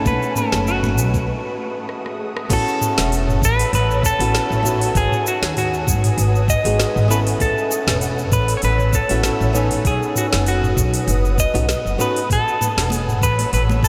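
Drenched in a huge, dreamy reverb, this excerpt of blissful sunset chillout glides at 98 BPM in A lydian with a gentle sixteenth-note swing. Up front, a clean, fingered electric guitar carries the melody through sampler grit and diffuse delay, while a boxy, fingerpicked flamenco guitar opens under a filter sweep and accompanies it until 12.2 seconds, and a detuned, ethereal pad with ensemble chorus sustains mellow chords. A thumpy, woody pizzicato upright bass, a soft electronic kick and a tape-toned R&B kit with metallic hats anchor the groove, with distant, bright congas heard only at the start and near the end, after a brief break and drum fill lead into the main section at 2.5 seconds.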